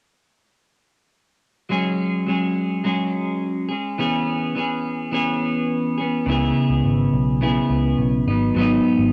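This indie pop passage, cut from a longer piece, moves at 105 BPM in a straight 4/4 and carries a wistful, lonely mood, with its tuning set to A4 = 435 Hz. A clean, picked electric guitar enters at 1.7 seconds and sits up front, playing accompaniment alone at first, its tone colored by subtle chorus, a warbly pitch drift and the grain of cassette tape. At 6.3 seconds a vintage electric bass joins underneath, its foam-muted, picked notes sounding dark, round and amped, and both parts continue to 9.1 seconds. The harmony passes from F#sus2 to E6, then settles on C#m7 and G#m7. The sound is that of a homemade cassette recording in a modest booth.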